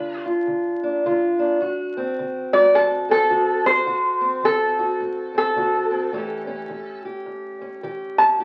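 A lap resonator guitar played with a steel bar takes the lead, its metallic, nasal slide melody riding up front in this swaggering, rollicking excerpt of acoustic country blues at 106 BPM with a swung 4/4 feel in D mixolydian, while a dark, fingerpicked parlour steel-string guitar accompanies through G7, D7 and A7 changes, all heard through a large studio's moderate reverb and the crackle and dulled top end of a very old 78 rpm record.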